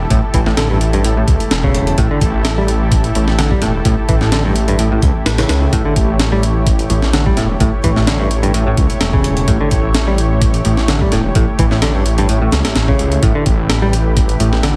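Gritty and funky, this breakbeat cut rides a sampler-style drum kit up front, with a thumpy kick, a high-tuned snare and hi-hat bathed in studio reverb, over a menacing, beating detuned saw bass and a growly picked electric bass riff roughened by vintage 12-bit sampler grit and digital delay. Behind them, a lush, warbling unison pad holds slow-attack chords on A7, its chorus shimmer pulsing with sidechain pumping. The whole mix carries a heavily compressed, radio-like sound with a light digital ambience.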